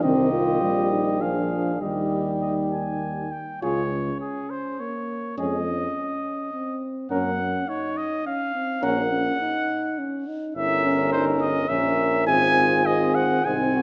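Set in a reverberant concert hall, this classical brass quintet excerpt has a noble, warm mood, moving at a rubato 103 BPM in 3/4 and shifting from E-flat major to D-flat major at 3.6 seconds. An up-front trumpet carries the melody over a punchy flugelhorn second line, while a clear, close-miked French horn with light vibrato and a distant, roomy, mellow euphonium fill in the accompaniment. A tuba with vibrato anchors the bass from far back in the hall, and all five parts play throughout the 13.8 seconds.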